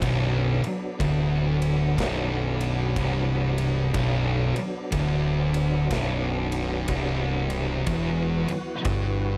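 A big, moderately reverberant studio sound frames this brooding, heavy stoner and doom metal passage at a slow, swung 61 BPM in B minor, where two thick fuzz guitars play a low riff, one dark in the background and the other up front, over a growling, overdriven picked bass, a punchy acoustic rock kit of kick, snare and ride that stops at 9.1 s, and a full, lightly overdriven tonewheel organ holding sustained chords with key click, chorus vibrato and fast rotary speaker in the background, the harmony resting on Bm before shifting to E5 at 7.9 s.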